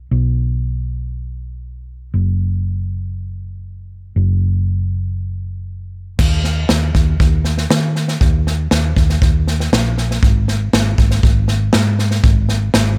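A dark, round hollow-body short-scale electric bass opens this hopeful, nostalgic indie folk excerpt at 119 BPM in a straight 4/4, alone and up front until a natural country drum kit with bright cymbals, a medium-tuned snare and a punchy kick joins at 6.2 seconds to build the arrangement in a dry studio room.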